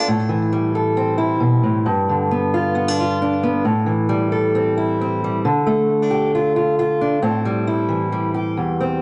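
Highlife in A minor at 134 BPM with a light sixteenth-note swing, this danceable, bittersweet passage cut from a longer piece features a solo fingerpicked steel-string acoustic guitar, dark and boxy with a parlour character, sitting up front with tape echo and a moderate plate reverb as it moves through Am7, G7 and Dm before returning to Am7 at 7.2 seconds, all under a tuning slightly below standard pitch and a soft top end.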